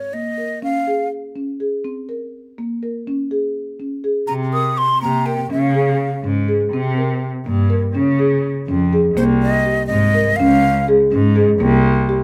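Contemporary instrumental chamber music in 5/8 at 246 BPM in C phrygian, pensive and hypnotic, built on mellow, woody marimba arpeggios played with soft mallets that circle Cm7 and Db chords. A breathy, hollow jazz flute with soft attacks and vibrato states the melody in brief phrases from the opening, and a bowed cello enters at 4.3 seconds to carry the bass with expressive portamento. The flute returns for a final phrase as the music moves into a new section at 9.2 seconds, all within a light reverb.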